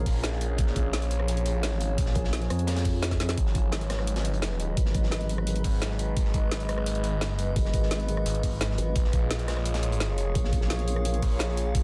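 A nasal, wobbling vowel-sweep bass sits up front beside a swirling, thick detuned saw bass run through a phaser, driving this dark, futuristic technical drum and bass cut between A#m and G#m, with the wobble bass sounding briefly at the start and returning at 2.2 seconds. Underneath, a knocking overdriven electronic kick and a layered kit with a woody snare and bright hats carry the beat, while a gritty, saturated breakbeat kit with a rolled-off top sits in the background and a drum fill lands at 3.1 seconds. An eerie, metallic FM drone holds sustained chords while a warbling, nostalgic lo-fi pad adds texture, both carrying chorus and their own reverb and both pumping with sidechain compression in a dense, heavily limited mix.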